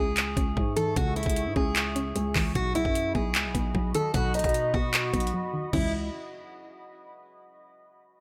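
A boxy, picked old ladder-braced acoustic guitar carries the melody up front, with a soft, round pluck with chorus and a growling, buzzy 808-style bass beneath it from the opening; a trap drum kit with knocking kick, metallic hi-hats, handclaps, toms and crash cymbal joins at 0.2 seconds, and a deep, moody ambient pad with chorus and built-in reverb settles in at 0.3 seconds, carrying this brooding, dark half-time hip hop excerpt until a brief break at 5.3 seconds.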